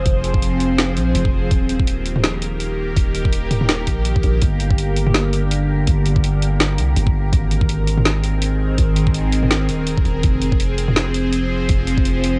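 A tense, string-like drone of detuned sawtooth voices opens the excerpt, holding sustained chords over a deep, mellow 808-style bass that moves from Fm through Eb, Gm and Abadd9 before returning to Fm. From 0.1 seconds a half-time drum and bass kit with a woody snare, bright hats and toms joins a knocking electronic kick, both overdriven, with the kit sitting up front and a swung feel beneath the cinematic mood. The drone carries reverb, phaser, vibrato and a sidechain pump, and cassette tape coloring on the drone and drums gives the home recording a dusty, muted top end.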